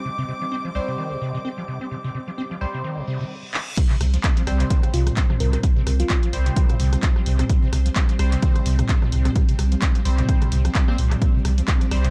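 An echo-heavy mix with light reverb frames this hypnotic, raw acid house excerpt in C minor, running at 129 BPM in 4/4 with a swung sixteenth feel. It opens on a lush, vintage string machine holding sustained chords through a filter sweep and ensemble chorus, while a nasal, band-passed chord stab with phaser and analog delay cuts in brightly. A squelchy, hollow square-wave acid bass carries the resonant riff, overdriven and chorused, and a dark, distant studio string section with light vibrato and a reedy gut-string tone adds texture until 3.3 seconds. A reverse cymbal and a drum fill lead into the drop at 3.8 seconds, where a dry, punchy electronic kick sits up front beside a thick, deep saturated sub bass on C2, while sidechain pumping runs through the string machine, acid bass and sub. The punchy analog drum machine adds crash cymbal, handclaps, hi-hat, rim click and toms, and at 4.9 seconds a bell-like, sparkling FM electric piano offers a brief melody in the background, shimmering with tremolo and delay.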